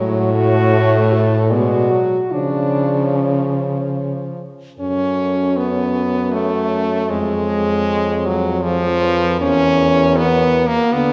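In a rubato 3/4 at 71-81 BPM, this solemn, yearning classical excerpt for horn quartet in F# minor sets a very quiet, warm melody horn with light vibrato and a smooth top above a mellow, distant second horn in the background, while a clear, present accompaniment horn and a bass horn with vibrato sit up front, the quartet heard from further back in a wet concert hall reverb as the harmony moves from F#m/A to F#7/E by 9.4 seconds.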